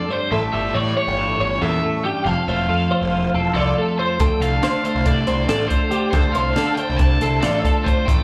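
A bright, overdriven cranked stack guitar sings the melody with slapback echo and digital delay, over two clean, compressed twelve-string electric guitars: one twangy and spring-reverbed in accompaniment, the other warm and up front, picking arpeggios through ensemble chorus, both touched with slapback. This intricate, wistful math rock and midwest emo excerpt moves at 278 BPM in eighths in 9/8 in D minor, with a fuzzed, punchy, up-front picked electric bass entering at 0.3 seconds as the chords pass from A7 to Fmaj7 to Dm7. A compact cocktail drum kit joins at 4.2 seconds with a dry, high-tuned snare, hi-hat and a punchy kick, all heard as a live gig through the venue's PA with club reverb and small-room ambience.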